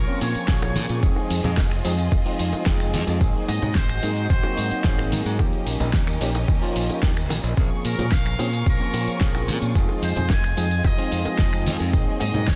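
A dense, heavily limited nu-disco cut with a groovy, cosmic mood, where a buzzy muted trumpet section carries the melody through tape echo over lush bowed violins pumping beneath, a bright fingered electric bass, a barky overdriven tine electric piano with chorus and echo, a pop kit of fat snare, bright hats, snaps and tambourine, background bongos and congas, and a gritty, thumpy overdriven electronic kick up front from 0.5 seconds.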